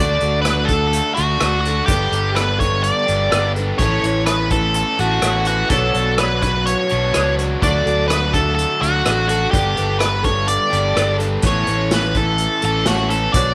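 Folk rock with a heartland rock drive moves at 126 BPM in D major, its jangly, warm mood carried by a nasal, overdriven lead guitar with a parked wah that sings the melody up front over a round, dark fingered electric bass. A shimmering, octave-doubled twelve-string acoustic glimmers in the background while a bright, double-tracked overdriven electric guitar plays a riff bathed in spring reverb, and a roomy, distant drum kit played with bundle sticks joins at 0.2 seconds with hi-hat, tight kick, rim click and a medium-tuned snare. The chords cycle through D, Gadd9, Aadd9 and Bmadd9 under light reverb in this brief cut from a longer piece.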